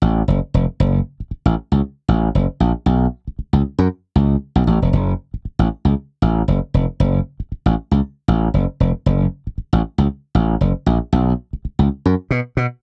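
Funk excerpt at 116 BPM in 4/4 with a light sixteenth-note swing, where a lone electric slap bass plays for 12.7 seconds, bright, punchy and up front in a dry, close 1970s-style studio sound touched with light reverb, setting a cool, funky mood.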